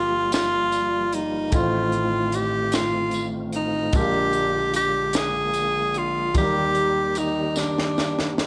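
A close-miked tenor saxophone carries the melody up front, with a subtone, a soft attack and a light vibrato in a jazz style. This is a slow gospel passage in 6/8, cut from a longer piece, and its mood is jubilant yet reverent. A grand piano accompanies with an intimate, natural sound and audible action noise, while a tonewheel organ holds sustained chords through a fast rotary speaker and chorus vibrato, its flute-like voice soft and clean. From 0.3 seconds an acoustic fusion drum kit of hi-hat, kick and snare sits forward, gritty and saturated, with a high-tuned snare, a tight kick and a pumping small-room sound, and a jingly tambourine sits in the background of a live room. The harmony moves from Gm7 through F7/A and Bb7 to Ebmaj7, a drum fill arrives at 7.6 seconds, and the whole mix sits in light reverb.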